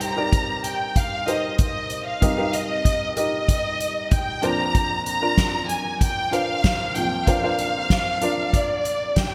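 A lush violin section carries the melody with vibrato and a soft, expressive bowed attack over this dramatic, bittersweet stretch of piano-driven pop in C minor, moving at 95 BPM in a straight 4/4. A woody, slightly detuned upright piano with a worn character and short sustain accompanies it, shifting from Cm7 to Bbadd9 at 4.4 seconds, while a soft-mallet acoustic drum kit adds hi-hat, a medium-tuned snare and a boomy kick. The hall reverb is moderate and the production bright, in a 1980s-style digital fashion, across the 9.3-second fragment cut from a longer piece.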